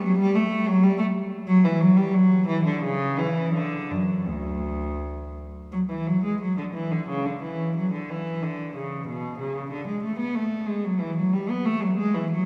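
A wet church reverb with a long decay surrounds this short fragment, though the cello itself sits up front with a touch of small-room ambience. A single bowed cello, played in period style with a gut-string tone and light vibrato, performs a serene, dance-like baroque-style suite movement in triple time with a flexible rubato feel. Its rich, reedy voice moves between D2 and B3, and a phrase heard from the start returns at 5.7 seconds.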